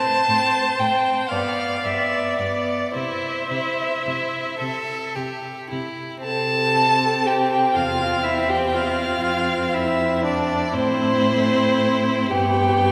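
A resonant church acoustic with a long, wet reverb of 3.5 seconds surrounds this slow, serene classical movement for string quartet, heard as a short portion cut from a longer piece. In a rubato 6/8 at roughly 35-41 BPM in dotted quarters, in C major, the first violin carries the melody up front with a rich, even tone and vibrato, though it sounds somewhat distant. The second violin plays a clear, focused second line close by, while the viola gives a warm accompaniment with a smooth top. The cello enters at 0.3 s on the bass, bowed with vibrato, portamento and expressive shaping. The harmony moves from A minor through G to C, then to Fmaj7 at 9.2 s and G at 12.3 s, and the opening phrase returns at 6.3 s. Each part is a single bowed player with vibrato, giving the quartet an intimate yet spacious glow.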